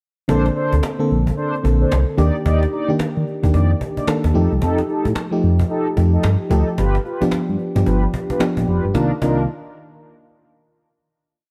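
Slick and punchy, this short new jack swing R&B piece rides a hard-swung groove built on a woody cajon beat whose faint snare is layered with a clap. An up-front sawtooth synth bass glides and bounces with muted ghost notes beneath syncopated, full-bodied chord stabs from an FM electric piano with tremolo. A mellow, detuned synth brass adds short chorused stabs with an evolving filter sweep, all framed in light digital reverb before a closing Cm11 chord at 8.9 s.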